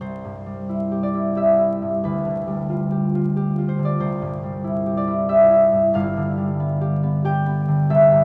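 Bathed in a lush church reverb with a faint vinyl crackle, this brief cut from a longer classical piece features a mellow, ringing concert harp, fingerpicked and up front, playing alone from G1 to G5 in a peaceful, graceful C major piece in 3/4 at 92 BPM with rubato, moving between C and G7 chords over 8.2 seconds.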